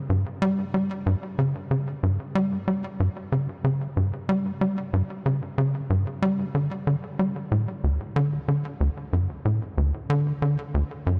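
A tight, punchy sequencer bass carries this ambient piece entirely alone from 0.1 to 11.2 seconds, its sawtooth and square-wave tone shaped by a filter pluck with a fast attack and decaying tail. It sits up front and drives steadily in straight 4/4 at 93 BPM, moving between D2 and G3, with a delay trailing each note. A huge ambient reverb, lasting around 7.8 seconds, surrounds the bass and opens the space into something cosmic and expansive. The tuning rests slightly below standard pitch, at A4 = 439 Hz. Cut from a longer piece, this short passage holds a single section throughout.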